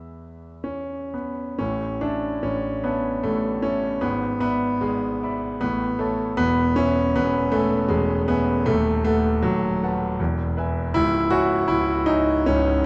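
A clear, intimate concert grand opens alone, its deep bass and audible action noise sitting up front in a moderate recital-hall reverb, for a passionate romantic character piece in triple time played with free-flowing rubato. After a short opening phrase, a longer passage moves from A through E7/G# and B7/D# before settling on C#m at 10.9 seconds. The dark, natural production gives this fragment of a longer work a warm, close feel.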